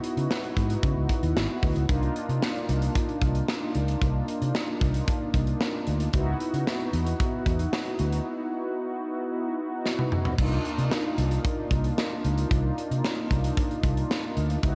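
A mellow synth brass part sits up front in this late-night, funky slice of early-eighties boogie funk, its brassy, detuned sawtooth tone shaped by ring modulation, a filter sweep and chorus, with fast-attack, sustained chords ranging from Bb3 to Gb4. Underneath, a modern studio drum kit drives a straight 4/4 at 113 BPM, with a tight kick, a medium-tuned snare, hi-hat, crash cymbal and toms, all sounding acoustic, mid-forward and close. A fingered electric bass enters at 0.2 s with a dark, round, amped tone, moving between Ab1 and Db3. The harmony shifts between Dbm11 and Cm11, and a break arrives at 8.3 s before a drum fill leads into a new section at 10.4 s. Tuned slightly sharp to A4 = 442 Hz, the whole mix is dreamy and soaked in a lush hall reverb.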